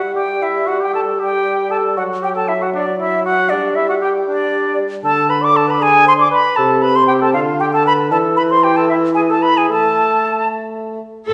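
Quick, lively classical-period orchestral music in 6/8, cut from a longer piece, with an airy, bright flute and a dark cor anglais playing second lines over a mellow bassoon accompaniment, the flute and bassoon sitting up front. At 11.3 s the winds give way to strings: a rich, lush viola section takes the foreground while a focused violin section carries the melody, heard very quietly and at a distance, and a double bass section anchors the bass, also very quiet. The whole is bathed in the reverberant glow of a church or concert hall.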